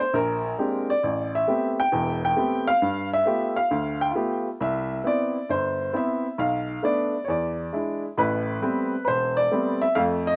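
Solo jazz piano, sophisticated and playful, swings through this brief cut from a longer piece. A lone upright piano carries everything from 0.0 to 10.4 seconds, its woody, natural tone sitting up front and reaching from deep in the bass up into the upper middle of the keyboard. A touch of slapback echo trails the piano, while the dry, open-air recording leaves almost nothing in the way of reverb around it. The harmony leans on rich extended colours, moving from Bb13 and Am9 through G9 to Cmaj7, then into a Bm7b5 and E7 turn that lands back on Am9 as a new section begins at 8.2 seconds. The lilting swing feel keeps the sophisticated voicings light on their feet.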